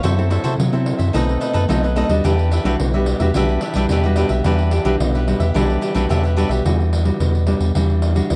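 A deep, smooth sine sub bass sits up front beneath a full-bodied, fingerpicked nylon-string guitar with audible finger squeak, a crisp, picked cavaquinho that drops out at 6.6 seconds, and a jingly pandeiro that sounds distant in a large room, giving this short samba and choro excerpt a yearning, bittersweet mood in a dry, close 1970s-style studio sound with light reverb.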